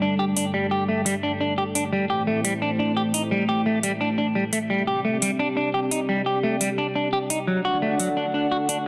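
A dense, heavily limited modern master sits in a moderate digital room reverb, giving this tense, futuristic slice of dark technical drum and bass a close, compressed sheen. At 173 BPM in a straight 4/4, a dark analog pad holds sustained chords throughout, its detuned sawtooth tone thickened by chorus, a sub octave and a slow attack, while a filter sweep runs across it for the whole passage. A clean, fingered semi-hollow electric guitar plays arpeggios up front, its hollow-body voice softened by a low-pass filter and trailed by tape echo. An electronic hi-hat enters at 0.4 seconds with layered, metallic hats that carry a tape-warm, small-room character. The harmony moves from G5 through Am and C5 to D, cut from a longer piece.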